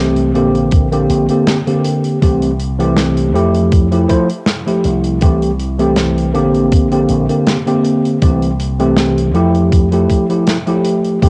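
A worn, slightly out-of-tune tine electric piano opens this nostalgic, dreamy vaporwave excerpt, sitting up front with a clean, direct tone softened by analog chorus, delay and cassette tape. Beneath it from the very first moment, a bright, punchy slap bass runs through an envelope filter and transformer saturation, keeping to its low register with an amped edge. Hi-hat and a medium-tuned snare from an airy, polished studio kit arrive at 0.2 seconds, and an electronic kick joins at 0.7 seconds with a thumpy, sampler-style weight. Both drum parts carry 12-bit sampler grit and cassette tape colour, and the kick stands out as a tape-warm punch in the mix. The harmony drifts through C6, Bb69 and Fmaj9 over a gently swung sixteenth-note feel, all bathed in a moderate spring reverb that gives the whole a hazy, home-taped character.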